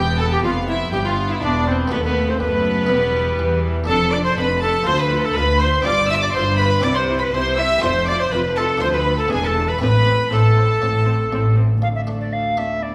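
A reverberant recital-hall sound, captured in a church or concert hall, frames this short cut from a baroque-style concerto movement with solo episodes, stormy and driving at 121 BPM in a straight 4/4. A pure, woody tenor recorder with a straight tone, soft attack and a touch of chiff sits up front from 0.2 s. It shares the melody with a violin section whose gut strings and light vibrato give it a reedy, period-style edge. A second, richer violin section carries a line beneath, while a viola section sits in the background as accompaniment. Dark cellos and a double bass section anchor the bass, with the basses dropping out at 11.8 s as the harmony moves from E minor through D minor, G7, C and F toward A minor and a closing D5. Under the strings, a muted, lute-like buff-stop harpsichord in Italian style plucks a dry, very quiet accompaniment.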